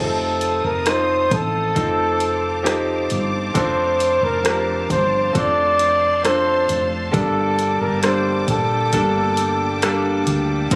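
Tender and hopeful, this pop ballad passage sets a smooth, up-front flugelhorn melody with light vibrato and scooped notes over bright concert grand piano, lush bowed strings heard at a distance, and a very quiet fingerpicked nylon-string guitar playing arpeggios. A growly, woody fretless bass anchors the low end, and at 0.4 s an overdriven deep house drum kit joins with a deep kick, hi-hat and rim click. The harmony moves from F7 to Gmadd9 at 7.1 s, and the dry, compressed sound with studio ambience has the feel of a phone recording made in the room.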